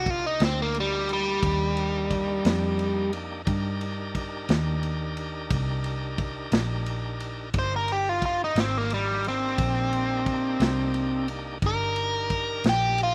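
Slow blues in 12/8 at 59 BPM in C minor, soulful and brooding, where a biting, up-front overdriven guitar with phaser solos over a single Cm7 chord, backed by a gritty, shouting tonewheel organ holding sustained chords through a fast rotary speaker, a round, foam-muted fingered electric bass, and a raw garage drum kit of punchy kick, medium-tuned snare and ride with a rolled-off top, all in a dry, roomless sound cut from a longer piece.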